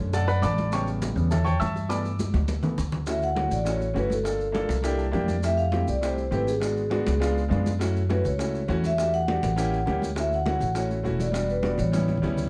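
Sophisticated and danceable, this Afro-Cuban jazz excerpt in D major moves at a brisk 203 BPM, opening with a clear baby grand piano playing solo over a woody, growly upright bass and background percussion before a drum fill at 2.2 seconds. At 3.1 seconds a close-miked, dry vibraphone played with soft mallets takes the melody through rich jazz harmony from Dmaj7 through Gm9 and C#7b9, while the up-front piano adds a fill at 4.8 seconds. High-tuned, ringing congas, round low-tuned bongos and grainy maracas fill out the groove in a dark production with light reverb.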